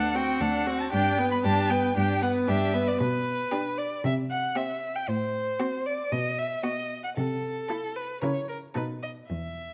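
Graceful and spirited, this quick classical-period movement for string quartet moves at 115 BPM in a straight 4/4, tuned to A4 = 441 Hz and set in a moderate recital hall reverb. Up front, a focused first violin with vibrato carries the melody from A4 to B5, over a smooth, even second violin line, while a distant, expressive viola fills in the accompaniment with portamento. An up-front cello supplies a rich, soft-attacked bass; the inner voices stop at 9.2 s as the melody and bass carry on to 9.7 s, through a harmony that starts on D7 and closes on B7.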